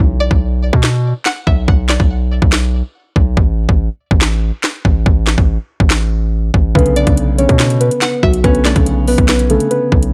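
A saturated, aggressive distorted 808-style bass anchors this eerie, melancholic half-time trap excerpt, with an up-front electronic trap kit of hard-clipped kick, sharp snare, handclaps and metallic hi-hats, while a twangy, warbling string-like resonator pluck glints above until 3.3 seconds; at 6.7 seconds a dark, mellow concert grand piano enters, soon joined by muted, intimate felt-like synth keys carrying the melody and the pluck returning at 7.0 seconds, all set in a dry, close mix.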